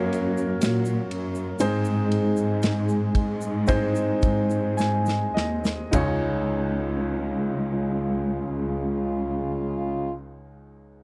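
Punchy, airy acoustic drums with bright cymbals sit up front in this tender, heartfelt pop ballad fragment in a close, dry 1970s-style studio sound, alongside a woody upright piano, a dark, lush bowed cello section carrying the bass, a mellow French horn section on a second line and a grainy egg shaker in the background. As the pace slows through the opening, a piano fill arrives at 4.2 s and a drum fill at 4.8 s, the harmony settles onto Dbadd9 at 5.9 s and the drums drop out at 6.2 s.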